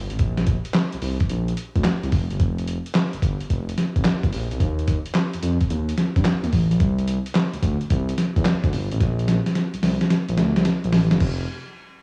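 An upbeat, bouncy new jack swing groove opens on a smooth, gliding synth bass, its sawtooth and triangle tones wave-folded and sustained with vibrato and portamento, sitting up front in a low register. A gritty, sampler-style drum kit joins almost at once, with a thumpy kick, medium-tuned snare, handclaps, hi-hat and crash cymbal, all overdriven and carrying a cassette-tape grain in a dry, close sound. A drum fill arrives at 9.0 seconds in this short R&B cut from a longer piece, swinging hard on the sixteenths.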